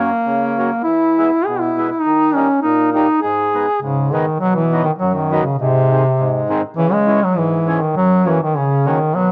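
Alpine folk in the manner of an alpine dance band, this short excerpt moves at a bouncy, festive 101 BPM in a straight 2/4, starting in G# minor and shifting to B major at 4.4 seconds. A warm duduk carries the melody up front from start to finish, its soft attack, vibrato and scooped notes giving the tune a folk-style character, with cassette tape colour and plate reverb on its tone. Beneath it a mellow accordion supplies accompaniment throughout, reedy and full with a rich tone-chamber sound, also set in plate reverb and sitting well behind the lead. The harmony moves through F#, E, D# and G#m before the change of key brings B, G#, C#m and a return to F#. The whole is framed by a short, wet small-room ambience and the intimate character of a home cassette recording.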